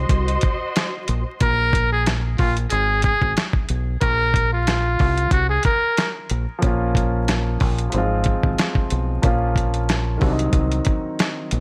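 A small room ambience, an echo-heavy mix and vinyl crackle frame this tough, reflective boom-bap hip-hop excerpt in Bb minor, moving at 92 BPM in 4/4 with a swung sixteenth-note feel. It opens on a brief break where a lush, distant string section holds bowed chords, filtered at both ends, before dropping out at 1.4 seconds. Underneath, a dark, round fingered electric bass sits up front throughout, joined almost at once by a dusty sampler-style drum kit that is compressed and gritty, with a thumpy kick, medium-tuned snare and hi-hat. A buzzy, breathy trumpet with a metal mute then carries the melody in a jazz style, with light vibrato and scooped notes, its filtered tone trailing dub echo. From 6.6 seconds a clear, intimate concert grand piano provides the accompaniment, its audible action noise and long sustain coloured by a cassette-tape quality, while the harmony circles from Bbm through Fm/Ab and back toward Cdim.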